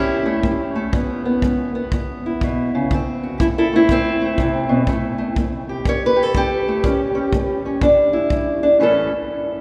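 Bathed in a long cathedral reverb, this short, swaggering and laid-back acoustic country blues excerpt swings on a dark, boxy parlour guitar, fingerpicked up front as it carries the melody over A7, E and D7 changes, while a punchy kick drum played with brushes sits further back from 0.4 seconds.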